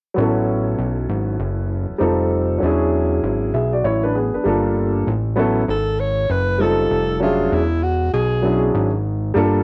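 Mellow and nocturnal, this short hip hop excerpt swings gently in 4/4, with a woody upright piano carrying extended chords through a cassette-tape haze over a fat, saturated analog bass with a plucky, fast attack. At 5.7 seconds a breathy alto saxophone, also tinted by tape, steps forward with a clear, jazz-style solo line touched by light vibrato, ending at 8.7 seconds. A small room ambience and light reverb give the home-recorded sound an intimate, late-night closeness.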